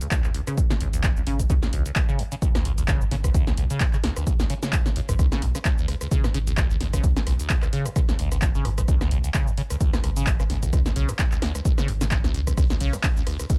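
An up-front, punchy electronic kick drives this raw, trippy acid house passage, cut from a longer piece, at 130 BPM in 4/4 with a 56% swing on the sixteenths, a dry, close sound and tuning at A4 = 441 Hz. A squelchy, resonant sawtooth acid bass riff in C# phrygian, colored by phaser, subtle chorus, delay, sidechain pumping and a filter sweep, rides over a tape-warm analog drum machine of handclaps, hi-hat, ride cymbal, rim click, shaker and a punchy snare, both drum parts re-recorded in a small room. From 0.8 s a round, deep analog bass with tube saturation and its own sidechain pumping sits in the background until 12.9 s.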